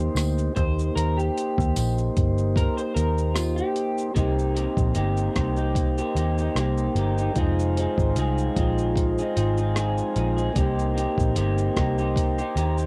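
Indie bedroom pop with a wistful, mellow mood and a lazy swung lilt, cut from a longer piece and captured on a lo-fi cassette home recording with light reverb. A slightly broken-up guitar through a small old amp plays a clean solo until 4.2 seconds over lush chorus, vibrato and plate reverb, while a soft, flute-like tonewheel organ with key click and slow rotary speaker sits up front. A round, foam-muted picked bass and a gritty boom bap sampler kit with a thumpy kick, hi-hat, rim click and shaker anchor the Cm7, Eb6 and Fm7 changes, and a jingly tambourine sits in the background from 0.2 to 3.6 seconds.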